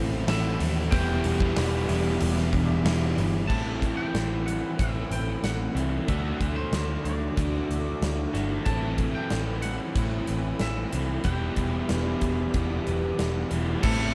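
A huge arena drum kit sits up front in this melancholic, brooding slice of shoegaze and dream pop rock, its punchy kick, medium-tuned snare, bright cymbals and pumping hall sound driving a straight 93 BPM in 4/4 in A dorian, tuned to A4 = 443 Hz. Beside it, a vintage foam-muted electric bass gives a round, dark, amped low end. Three overdriven guitars stack riffs in the background: a dark semi-hollow guitar with ensemble chorus, a crunchy guitar trailed by reverse reverb, and a double-tracked guitar that drops out at 3.5 seconds and returns at 13.8 seconds. Over them, a clean, twangy electric guitar carries the melody through delay, while a very quiet, shimmering octave-doubled twelve-string acoustic fingerpicks arpeggios and a detuned, warbling wavetable pad holds slow-attack chords that morph as they sustain. The harmony moves from Amadd9 through Em7 and Dadd9, and the whole mix is soaked in a lush hall reverb for a dreamy haze in this piece cut from a longer track.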